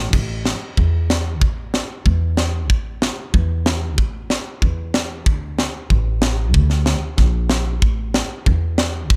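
Klezmer in 2/4 at 94 BPM, this short excerpt from a longer piece has a bittersweet yet festive mood, carried by a straight feel. A woody, thumpy upright bass with gut strings plays pizzicato in its low register from the start, joined at 0.1 seconds by a tight metal drum kit with bright crash cymbals, a high-tuned snare and a tight kick. The drums sit up front with a polished, airy big-room character, while the recording as a whole carries little reverb.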